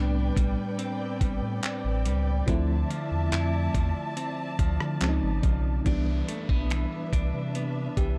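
A straight, unhurried 4/4 pulse at 71 BPM sets this dreamy, smooth contemporary R&B excerpt in C major, with a gritty, compressed sampler-style drum kit entering at 0.4 seconds to place finger snaps, handclaps, hi-hat, rim clicks and a thumpy kick up front. Beneath it, a deep, full sub bass with an added octave blends sine and triangle tones, sustaining each note after a fast attack. An FM electric piano with a noise layer and tremolo supplies decaying chords, while a clean, picked electric guitar spins compressed arpeggios through a digital delay. A lush, bowed string section with vibrato holds dark, expressive chords with a smooth top. The harmony moves from Am11 to Dm9 and Dbmaj9 before settling on Cmaj9 at 5.9 seconds, where an electronic downlifter sits in the background, all within a dry, dark, warm production that sounds cut from a longer piece.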